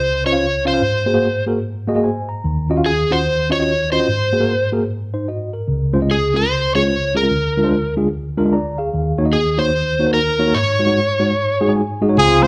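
Swung eighths drive this uptempo gospel cut at 148 BPM in 4/4, its reverent yet jubilant mood carried by a progression that opens on Dbmaj7 and moves through Ab9 and Ebm9 before settling on Ab7sus4. An overdriven, fingered slide guitar sings the melody up front until 11.7 seconds over a mellow, clean tine electric piano that sounds through its built-in speakers and slips in a fill at 11.6 seconds. A clear, present horn section with light vibrato takes the melody at 12.2 seconds, all set in a dark, warm production with moderate large-studio reverb.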